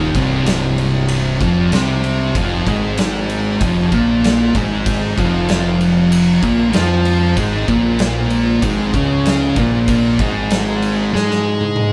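Recorded as a band playing live in one room with light reverb, this heavy, sludgy stoner and doom metal piece moves at 96 BPM in a straight 4/4 through Cm, Fmadd11 and Bbm7/Ab, carried by two thick, distorted fuzz guitars picking riffs (one up front and one in the background), a punchy, overdriven fingered electric bass, and an oversized, low-tuned acoustic drum kit with a boomy kick, a medium-tuned snare, dark ride cymbal, toms and a gritty, saturated, pumping big-room sound, which enters at 0.1 seconds and closes with a fill from 11.1 seconds.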